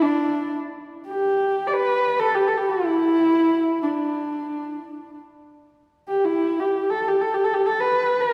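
This is Mongolian traditional folk music in free time, set in the D zhi mode and tuned to A4 = 441 Hz, with a proud, galloping mood. A single horsehead fiddle plays solo from 0.0 to 8.3 seconds, its bowed horsehair strings sounding dark, woody and husky across a range from D4 to D5. The player colours the line with vibrato and portamento, giving the phrases a sliding character. The fiddle sits up front yet carries a distant quality, wrapped in a wet church reverb with a 2.8-second decay that suggests a church or concert hall. Cut from a longer piece, this short passage captures a single statement of the melody.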